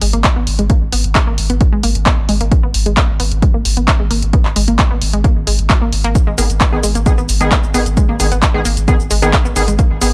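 The electronic kick drum stands out most, a dry, punchy analog thump with a touch of small room ambience, sounding from 0.2 s in this hypnotic, industrial stretch of driving peak-time techno cut from a longer piece in straight 4/4. Around it, a punchy analog drum machine sits up front with handclaps, hi-hat and shaker, while a saturated sub bass holds a deep, thick sine tone on G#1, overdriven, low-pass filtered and pumping against the sidechain. A unison pluck carries the riff throughout, a bright, detuned sawtooth with a noise layer and a warbling vintage character, thickened by tube saturation and trailed by analog delay. At 6.4 s a sync-sweep polysynth enters with edgy, nasal stabs, its chorused sawtooth tone echoing through tape delay and pumping with the sidechain. The whole sits on a single G# minor chord, captured with a gritty, dry hardware-and-cassette character under a digital ambience.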